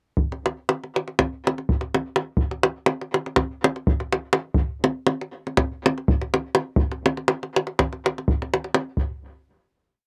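Balkan folk in 9/8 with a straight feel, carried entirely by a lone davul whose tight, acoustic, close-miked two-stick pattern sits up front with a bittersweet, fiery edge. Recorded outdoors with light reverb, the drum plays from 0.2 to 9.2 seconds before the brief piece closes on a final hit at 9.0 seconds.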